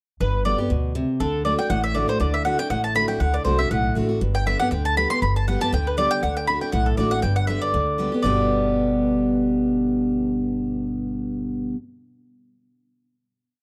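A dry, close 1970s-style studio sound with a small room around it carries this short, joyful and driving bluegrass piece in G major at 239 BPM, swung lightly on the eighths, where a bright, double-strung mandolin up front plays a fiddle tune in running eighth notes over a full-bodied dreadnought guitar alternating bass and strum with bass runs, and a woody, dark pizzicato upright bass holds a two-beat root-and-fifth line with walk-ups, moving between G and D before all three settle on a final chord at 8.2 seconds.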